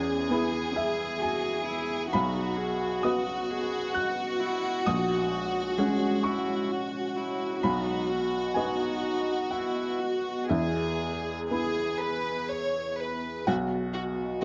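A slow, rubato 3/4 pulse hovering around 59-66 BPM carries this short, intimate neoclassical passage in B major, cut from a longer piece and carrying a hopeful mood. Up front, a chamber violin section plays the melody with light vibrato and soft, sul tasto bowing, while a felt-muted upright piano supplies a soft, mellow accompaniment with short sustain, spanning from A#1 to F#6. A dark cello, played by one player, sits further back on a second line, its airy bow and smooth top lending a shadowy depth. From 0.1 s a warbly, lo-fi tape-like pad holds sustained, detuned chords in the background, its nostalgic, vintage tone colored by chorus, phaser and its own reverb. The harmony moves gently from E to B, through F#add9/A#, and back to B and E before settling on B at 13.5 s, all captured with close, detailed microphones in a light reverb.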